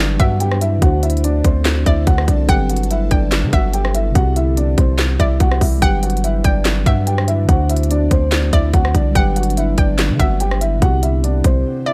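A digital ambience surrounds this triumphant yet wistful trap excerpt in half-time, where an up-front electronic drum kit with a hard-clipped kick, sharp snare, crisp hats, handclaps and rim clicks enters at 0.2 s beside a deep, decaying sine 808 bass that sustains long notes until 11.6 s. A dark, boxy concert grand carries the melody with audible action noise, while a hollow, bouncy square-wave pluck with chorus and tape echo adds a bright second line. A mellow tine electric piano plays clean accompaniment, and a very quiet ethereal pad with ensemble chorus and phaser holds airy chords over a Gmaj7, D7 and C progression before a break at 11.7 s.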